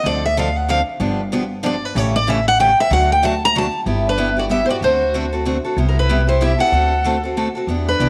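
A lead acoustic guitar opens this lively, swinging gypsy-jazz waltz, taken from a longer piece. The guitar has a concert-sized body and finger squeak audible on its fresh strings, and it carries the melody as a solo over the first 3.9 seconds. A woody, thumpy upright bass on gut strings is plucked up front beneath it, giving a dark bottom. A second picked guitar, a boxy parlour instrument, fills in the accompaniment, and both guitars share a bright attack. The tune moves at 189 BPM in 3/4 with a swung eighth-note feel in G major. At 4.1 seconds a single bowed violin joins in the background with a focused, rich, vibrato line. Moderate plate reverb adds a sense of space.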